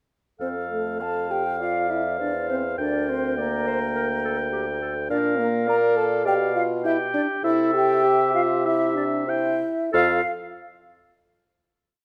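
A moderate recital-hall reverb frames this lively, spirited, quick classical-period movement for wind quintet in F major at 89-105 BPM in a rubato 4/4, where an airy, distant concert flute with vibrato doubles the tune at the octave over the oboe's vintage-toned independent inner line, the punchy clarinet's sustained chords, the close-miked French horn and the smooth-topped bassoon's sustained bass with passing notes, the pace slowing from 4.0 seconds into a final F chord at 9.9 seconds.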